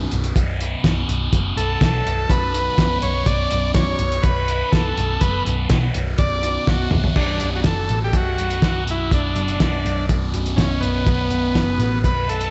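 A thick, double-tracked fuzz guitar riff with phaser opens this dark, mysterious psychedelic rock excerpt in B minor at 123 BPM, over a round, punchy hollow-body bass and a muffled, cloth-damped drum kit with a fat snare and tight kick; a buzzy, overdriven combo organ with light vibrato and tape echo takes the up-front melody at 1.6 seconds, and a drum fill at 6.7 seconds leads into a new section at 7.2 seconds, the dreamy mix soaked in lush hall reverb.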